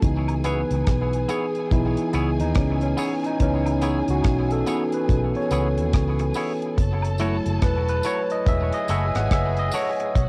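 An overdriven tine electric piano carries the solo throughout this 10.3-second cut from a longer lovers rock reggae piece, its bright, barky, gritty tone pushed through a combo amp and up front, with cassette tape colour and analog delay. The mood is longing and smooth, at 71 BPM in 4/4 with a swung sixteenth-note feel, moving from C#m7 to F#m7 at 6.8 s. Underneath, a vintage foam-muted fingered electric bass sits dark, round and punchy, while a deep, dry reggae drum kit marks time with hi-hat, a tight kick and rim click. A twangy, clean, picked electric guitar adds compressed stabs from 0.4 s, and a distant, lush string section plays a bowed second line with vibrato and portamento. Woodblock, tambourine, egg shaker and group handclap sit close and dry in the background, and the whole take has the small-room sound of a home cassette recording.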